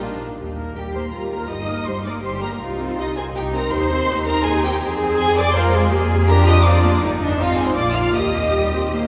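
Moving in a brisk, straight 3/4 at 163 BPM, this graceful, lively classical-period movement for string orchestra in Eb major is cut from a longer piece, with violas, cellos, double basses and a second violin line sounding from the start and a clear, focused first violin melody entering at 0.8 s. The second violins add expressive vibrato, the lush violas fill out the accompaniment, and the smooth cellos and rich, up-front double basses carry the bass as the chords move from Eb through Cm and Fm to Bb7/F before settling on Eb. A wet church reverb gives the bowed ensemble a spacious, resonant hall sound.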